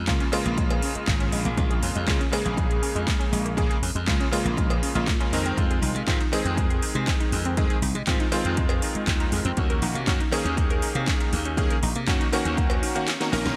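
Sleek and groovy, this nu-disco excerpt is cut from a longer piece and rides a straight feel through a single section, moving from Bbm7 to Fm7 at 5.3 seconds and on to Ebm7. A glassy, punchy electric slap bass anchors the low end, while a vintage electric grand piano sits up front with a cutting, clangy tone and chorused unisons, its chords pumping against the sidechain and trailing digital delay. Tucked in the background, an analog pluck adds round, detuned arpeggios built from sawtooth, square and triangle waves with a noise layer, ring modulation, a filter sweep and chorus, also pumping and echoing. The drums are overdriven and layered, re-recorded in a large room: an electronic kick hits hard, and a house kit brings a cracking snare, metallic hi-hats, handclaps and gated reverb, joined by an acoustic small-room cowbell far behind the mix. At 13.1 seconds the kick drops out for a closing drum fill, all framed by light reverb and a bright 1980s-style digital sheen.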